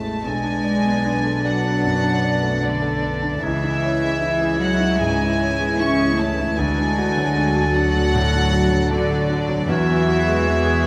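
A floating, pure-toned symphonic violin section carries the melody of this tender, uplifting cinematic film score excerpt, bowed sul tasto with a soft attack between D5 and C#6. The piece moves at a rubato 76 BPM in 4/4. From the start, a clear concert grand piano with a smooth, vintage character and deep bass supplies accompaniment, alongside a very quiet, woody viola section with lush vibrato. A distant cello section and a double bass section, both bowed sul tasto, hold the low end, with the basses entering at 0.3 seconds. Second lines come from an airy, hollow silver flute with vibrato from 0.2 seconds, a classical-style solo clarinet in the background, and an intimate studio violin section with light vibrato. The harmony moves from Bm7 through C#m and D to Eadd9, set in a moderate scoring-stage reverb with a 1.8-second decay.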